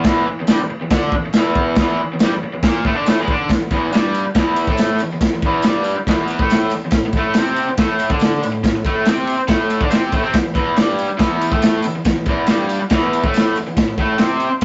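A straight 140 BPM in 4/4 powers this rowdy, swaggering garage rock excerpt, where a bright, overdriven, double-tracked electric guitar riff spanning E2 to D4 and a crunchy, gritty breakbeat drum kit with dark cymbals, a tight kick and a medium-tuned snare both sit up front from the start, a jingly tambourine stays in the background from 0.5 seconds, and the chords move from E7(no3) through Emadd11 and Amadd11 to land on Am at 13.8 seconds, all captured in a rough rehearsal-room sound with a small room's reverb and a rolled-off, muffled top.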